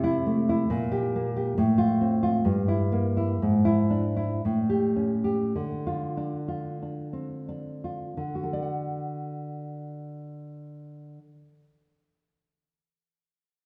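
A nylon-string guitar, dark and full-bodied, sits up front in this intimate, wistful romantic piece for solo classical guitar, moving in 2/4 at a rubato 42-69 BPM and tuned to A4 = 444 Hz. Thumb-plucked notes and audible finger squeak ride over a progression from Am/C through Gm/Bb, F/A, Edim/G and E7/G# to A7 and Dm, with the pace slowing between 2.5 and 8.2 seconds before a D chord opens the next section. The guitar stops at 11.6 seconds, its sound steeped in the wet reverb of a church or concert hall, in this fragment cut from a longer piece.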